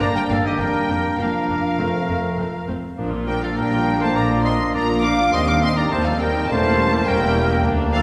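A quick, lively and cheerful classical-period symphony orchestra movement in Bb major at 102 BPM, where a rich, distant violin section carries the melody over a second, lush violin section, a clear vintage-toned solo oboe, a small group of pure-toned flutes and a mellow, roomy clarinet on supporting lines. A mellow bassoon and a focused viola section fill in the accompaniment, a close-miked French horn section holds sustained chords, and a smooth cello section and an expressive double bass section anchor the bass, all bathed in the 2.0-second reverb of a concert hall.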